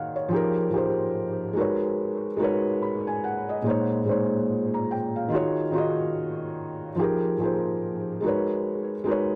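A felt-muted upright piano plays alone through this 9.4-second excerpt of a hazy, reflective hip hop piece, set at 72 BPM in 4/4 with a 60% swing on the sixteenths. Its tone is soft and dark, the thick felt giving each note a muted, intimate quality, and the instrument sits up front in the mix with a tape echo trailing behind it. The piano moves through lush minor eleventh chords, from Fm11 and Abm11 to Bbm11 and Ebm11 before circling back to Fm11 and Abm11, spanning a range from Bb2 to Cb6. Light small-room reverb frames the playing, while the dry, gritty hardware recording suits the piano's vintage character. The result feels unhurried and introspective, a short, smoky excerpt of mellow harmony.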